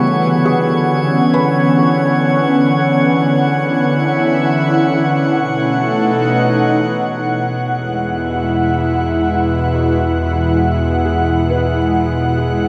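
Ambient, serene and peaceful, this fragment of a longer piece centres on an airy, breathy pad holding sustained chords up front with chorus and a filter sweep through the first 7.1 seconds, over a calm organ-like drone in the background and a very quiet felt-muted upright piano whose intimate arpeggios carry audible action noise. Until 7.1 seconds a glassy texture of drifting overtones shimmers above with chorus. At that point the harmony settles onto Eadd9 and a round, deep analog bass enters, all bathed in a huge, wet ambient reverb.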